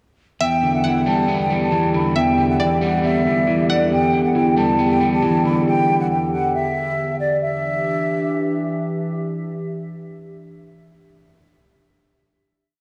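A half-time trap groove carries this brooding, eerie hip hop piece, where an airy, hollow concert flute with vibrato loops a melody up front while a dark, slightly broken-up electric guitar repeats a fingered arpeggio in eighths like a sampled loop. A twangy, string-like resonator pluck with chorus and phaser adds a sparse counter-melody until 3.9 s, all over a warbling, detuned, nostalgic tape-like pad of sustained chords. The dreamy mix is soaked in plate reverb, and after the breakdown the pad lingers on a final chord from 7.4 s to 10.7 s, with the flute continuing until 8.7 s.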